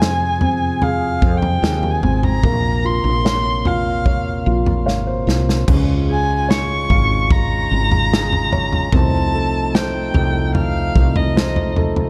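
Emotional and melancholic, this slow pop ballad excerpt in F minor at 74 BPM sets a distant, woody violin melody above concert grand piano, clear tonewheel organ chords through a stopped rotary speaker, a growly fretless electric bass with analog chorus and a punchy, airy country drum kit, with piano and drum fills near 5 seconds leading into a new section, all in a dark production with light small-room reverb.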